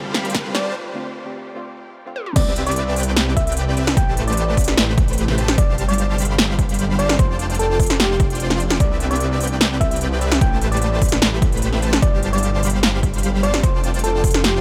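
This lush, euphoric half-time future bass passage at 149 BPM in F lydian brings together a punchy, overdriven electronic kick, an up-front big-room drum kit with a punchy snare, crisp hats, crash and toms, a huge compressed supersaw riff, a round FM-flavoured lead melody with tape echo, a shimmering, ethereal pad, a soft, dark pluck that plays only until 2.4 s, background risers, and a thick, saturated detuned saw bass that enters with the drop at 2.4 s, all in a dry, high-passed mix.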